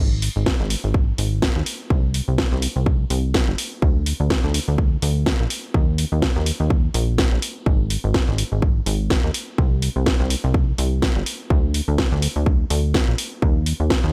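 Feel-good and uplifting, this piano house excerpt swings on a funky, plucky analog bass with a sawtooth-and-square filter pluck and sidechain pumping, joined by a punchy, layered electronic kick and a house kit of hi-hat and cracking snare, both tape-warm and up front in a dry, small-room mix.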